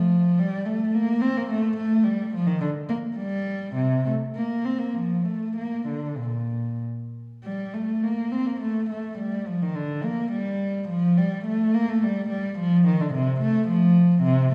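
Introspective and flowing, this baroque-style suite movement for solo cello moves in a rubato 3/4 at about 91-111 BPM, opening in Bb major and turning to G minor at 7.4 seconds, with a single bowed cello ranging from Bb2 to C4, tuned to A4 = 441 Hz, its light vibrato, soft attack and airy bow sounding intimate and up front against the wet reverb of a recital hall until the fragment breaks off at 14.5 seconds.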